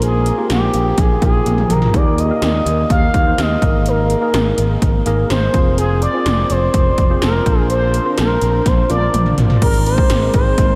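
Romantic and uplifting, this 1980s-style pop excerpt at 125 BPM sets a smooth, resonant sawtooth synth lead with chorus and diffuse delay over a worn, slightly out-of-tune tine electric piano, a bright picked electric bass, and punchy, overdriven electronic drums with gated snare and toms and metallic hats, with drum fills at 1.5 and 8.7 seconds before a swirling, detuned phased pad enters at 9.6 seconds, all soaked in a huge, dreamy reverb.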